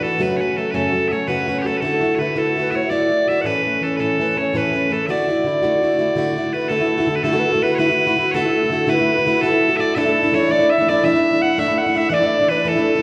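In a straight 9/8 slip-jig rhythm, this cheerful Celtic folk excerpt puts piercing, up-front bagpipes on the melody over a picked steel-string acoustic guitar with audible finger squeak, while a pure, woody baroque flute with vibrato adds a mellow second line from 0.2 seconds, the group heard from further back in a reverberant recital hall.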